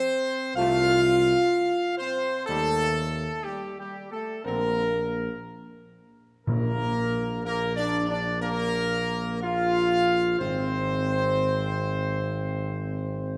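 Bright trumpets carry a regal, solemn melody up front over dark French horn chords from the very start of this slow classical ceremonial fanfare at 62 BPM, with clear, tight trombones and a distant, roomy tuba joining at 0.6 s and close timpani on medium mallets entering at 6.5 s as the Bb major harmony turns mixolydian, the ensemble sitting inside a wet concert hall reverb.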